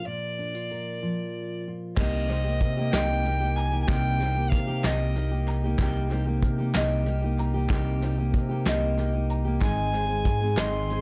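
This stirring, wistful indie folk piece opens with a rich, focused fiddle carrying the melody over a fingerpicked dreadnought acoustic guitar with a dark, full-bodied tone, sitting up front, on a Bb chord. At 2.0 seconds the arrangement builds as the harmony moves to Cm7. A picked jumbo acoustic guitar with fresh strings and audible finger squeak takes over the accompaniment, while a bright tenor ukulele plays fingerpicked arpeggios through analog delay in the background. A round, amped electric bass sits up front, and a soft brush kit adds a punchy kick, a medium-tuned snare and shadowy cymbals, with crisp group handclaps behind. The fiddle, bowed by one player with light vibrato and a smooth top, drops out at 5.6 seconds and returns at 9.6 seconds as the harmony shifts to Ab. Moving at 63 BPM in a straight 6/8 in C minor, the piece carries light reverb and a dark, warm production, and it is cut from a longer work.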